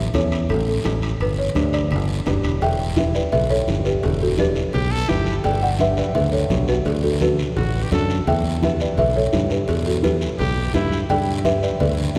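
Bathed in the long, cavernous reverb of a church or concert hall, this passionate, driving cumbia excerpt is led by a dry, woody folk marimba carrying the melody over a growly, punchy fingered electric bass that sits up front. A dark, boxy upright piano, ringing congas, and vintage metal-shell timbales and cowbell fill out the background, while a raspy guiro adds its scrape to the rhythm. A gritty, growling trumpet with light vibrato adds short second-line phrases at 4.7, 7.6 and 10.4 seconds.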